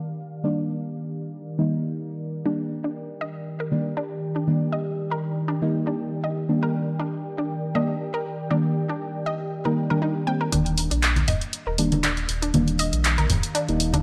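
A light reverb gives this sunny deep house excerpt a soft, airy glow, moving at 119 BPM in 4/4 with a gentle swing on the sixteenths and resting on an Ebmaj7 chord in Eb major. A smooth, detuned sawtooth pad holds sustained chords under chorus, shaped by a filter sweep. From 0.4 s, deep, dark chord stabs sit up front, their mellow tone colored by chorus, phaser, delay and a moving notch. At 2.5 s, round, bright analog pluck arpeggios join, carried by chorus and a digital delay. At 10.5 s a build-up begins: a nasal, detuned synth bass with vibrato enters alongside a punchy, dry analog drum machine playing handclaps and filtered hi-hats in a small room ambience, plus close, low-tuned congas with a thick skin.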